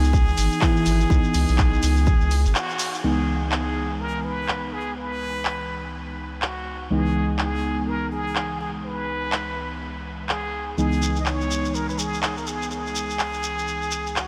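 A close, brilliant plunger-muted trumpet sings a wah-wah, vibrato-laced jazz melody over soft, dark, chorused FM electric piano stabs on a C#m9 chord, a deep, nasal analog bass, grainy shekere and a punchy kick in this moody, smooth deep house excerpt in C# minor at 124 BPM with a 16th-note swing, where the bass and kick fall away by 2.5 s, a band accent and brief break land at 2.6 s, and from 3.0 s the pumping, tape-echoed piano rides a long filter sweep beneath handclaps and bright hi-hats, with the shekere returning late and the whole dreamy mix soaked in huge reverb.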